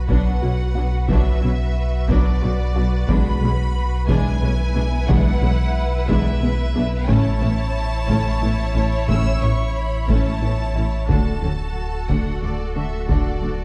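Two violin sections open this brooding, tense excerpt of a hybrid orchestral and electronic film score alongside an up-front, deep sine-and-triangle sub bass, one violin section carrying a lush, distant melody high above while the other adds an intense second line. Beneath the violins and sub bass, smooth, close violas join a very quiet, rich bed of cellos and double basses. In the background, hard-stick taiko drums sound compressed and saturated, and a squelchy, resonant sawtooth pluck with phaser and tape echo spins arpeggios through a dark scoring-stage reverb.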